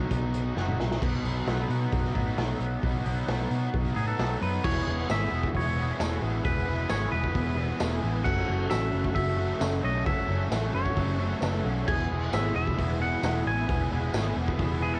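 A straight, upbeat 4/4 pulse drives this jangly indie rock excerpt as a raw garage drum kit with a punchy kick and a gritty, rolled-off top pumps in a small room, a round, foam-muted fingered bass sits up front, and a bright overdriven stack guitar and a compressed fuzz guitar with analog chorus churn out riffs, while a twangy clean guitar carries the melody from 4.0 seconds, joined at 4.6 seconds by a worn, slightly out-of-tune tine electric piano, sustained chords from a very quiet tonewheel organ with key click and slow rotary vibrato, and, from 5.1 seconds, a jingly, band-limited tambourine, all with the character of a home cassette recording.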